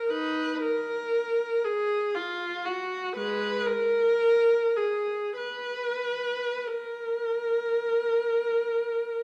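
A lone bowed viola opens this short classical excerpt, playing from the first moment through to 9.2 seconds. The mood is meditative and mournful, moving freely in 3/4 at a slow 43 to 60 BPM with an expressive rubato feel. The single player's tone is rich, coloured by vibrato and gliding portamento as the line moves between Ab3 and Cb5. The viola sits up front yet carries a faintly distant quality, wrapped in the wet reverb of a recital hall with a 1.6-second decay. The overall production is dark and warm, and the fragment ends abruptly as a cut from a longer piece.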